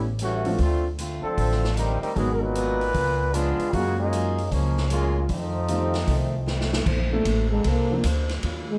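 This short excerpt of energetic, brassy big band swing at 153 BPM is driven by a woody, thumpy upright bass played pizzicato and a swinging drum kit with a punchy kick, while a clear, tight trombone section carries the line over picked archtop guitar and an intimate grand piano with audible action noise, until a drum fill at 6.5 seconds hands off to a dark, breathy solo trombone with plate reverb at 7.1 seconds, briefly backed by a distant, bright trombone section holding chords.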